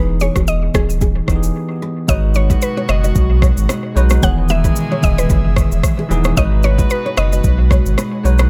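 A woody, mallet-like synth pluck carries the melody over barky, bell-like tine electric piano chords and a round, up-front sub bass from 0.0 s, joined at 0.2 s by an electronic afro-pop kit with a deep kick, rim click and shaker and by a fingerpicked nylon-string guitar riff in the background; after a brief break, a tight horn section with a smooth top and light vibrato and an airy, breathy pad with warbling chorus enter at 2.1 s, filling out this sultry, mellow afrobeats excerpt in G# minor at 112 BPM, with lightly swung sixteenths, Emaj7 to G#m7 changes and a dry, echo-heavy sound as dub echo trails the pluck, piano, guitar and horns.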